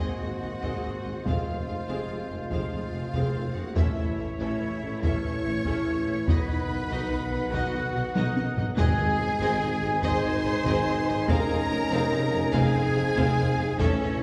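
Heavy-stick taiko drums, close and dry, drive this heroic, triumphant epic orchestral film cue in 12/8 at 96 BPM, entering at 0.6 s under a huge, dark, barely audible impact and playing a fill just before a very quiet timpani hit at 8.8 s. A rich, smooth upper violin line with light vibrato carries the second line over a focused violin melody in the background, with rich, even violas and a symphonic cello section, while a bowed double bass section and mellow tuba hold the bass. Mellow French horns and clear trombones sustain chords moving through Ab, Fm, A and B as a distant, roomy solo trumpet adds stabs, all set in a scoring-stage reverb heard from further back in the room in this short cut from a longer piece.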